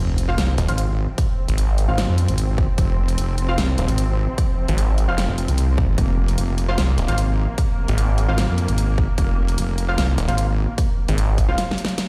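Chaotic and aggressive, this half-time heavy wobble dubstep excerpt opens on a faint sub drop impact under veiled, muted string chords kept distant and low-passed, their sustain pumping against a sidechain. A heavy, saturated wobble bass with chorus and a snarling, detuned saw bass with a growling moving notch dominate the front, while an overdriven punchy kick enters at 1.2 s beside a huge snare and bright hats, and bold orchestra-hit-like stabs ring through tape echo. The whole sounds as if played on a big sound system in a bare stone room, ending in a brief break and drum fill at 11.6 s.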